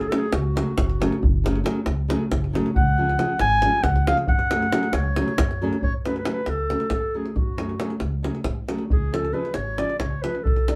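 A small, wet room gives this live-sounding Balkan wedding-band excerpt a close, lively ambience, with a restless, bittersweet mood carried in a straight 7/8. A mellow, close-miked clarinet sits up front in a classical style, taking a solo over the first 5.8 seconds before the music moves into a new section. Beneath it, a full-bodied fingerpicked nylon-string guitar, a woody, growly pizzicato upright bass and a tight, dry davul play throughout, moving between F#m and C# chords.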